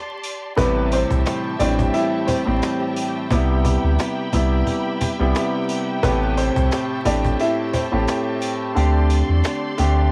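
Home-cassette sound with vinyl crackle and a small, lightly reverberant room frames this reflective, dark boom-bap hip-hop excerpt at 88 BPM in A minor. Lush, distant bowed strings open alone before a round sine sub bass, an intimate baby grand piano with audible action noise, a woody upright piano melody that ends at 8.2 seconds, and a snappy, dry cajon enter at 0.6 seconds over jingly sleigh bells. The tape-treated pianos, strings and cajon move through Am7 and Cmaj7 until the kick drops out at 8.8 seconds on a closing D7sus4.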